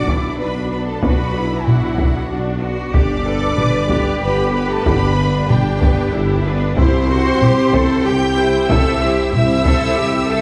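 Heroic and dark, this cinematic orchestral film-score excerpt moves at 94 BPM in 3/4 through Bm, G and C, with lush, expressive violins gliding on a high melody over a smooth second violin line, softly bowed violas, focused cellos, a distant double bass section and a shadowy tuba, while roomy horns hold sustained chords, a huge but barely audible bright impact opens the first second, and a vintage, band-limited taiko ensemble with heavy sticks drives from 0.1 s, all set back in a wet scoring-stage reverb.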